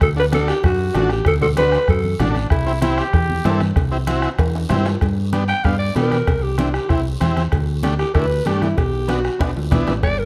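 Light reverb gives this joyful, danceable cumbia excerpt a lively sense of space as it moves at a brisk 192 BPM in 4/4 with a straight feel, in G major. A breathy, gritty alto saxophone leads up front with vibrato and a smooth top, and a clear, punchy vintage flugelhorn briefly takes a second line at 2.2 seconds. Underneath, a buzzy, overdriven combo organ with heavy vibrato fills in the harmony while a warm fingered electric bass sits up front. A soft-beater bombo anchors the rhythm, thick-skinned congas and ringing cowbell and timbales sit in the background, and a raspy, compressed guiro adds texture. From 5.0 seconds the saxophone takes a solo over chords moving from G through C, Dsus4 and Bm, with drum fills arriving at 4.4 and 9.1 seconds.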